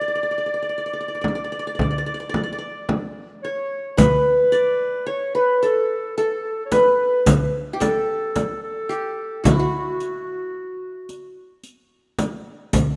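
In a straight 10/8, this festive, stately Turkish makam ensemble piece, cut from a longer performance, sets a bright-edged qanun melody played with fingerpicks up front over a warm, classical-style clarinet second line. A small, saturated clay-shell darbuka enters at 0.7 s, a deep, large frame drum struck with hard hands follows at 1.2 s, and a close, dry riq with dark jingles joins at 4.0 s, all within a rough home-demo mix carrying a lush hall reverb.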